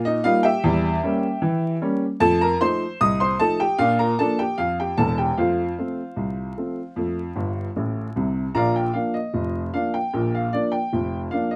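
A clear, woody upright piano plays solo and up front in this playful, jaunty ragtime passage, cut from a longer piece and moving at 76 BPM in a straight 2/4 in Bb major. The harmony passes from Eb through Edim7 and F7 to Bb and F, and a brief piano fill at 7.4 seconds leads into a new section at 8.5 seconds that lands back on Bb. Close, detailed miking with light reverb keeps the piano present, while a layer of vinyl crackle runs beneath it.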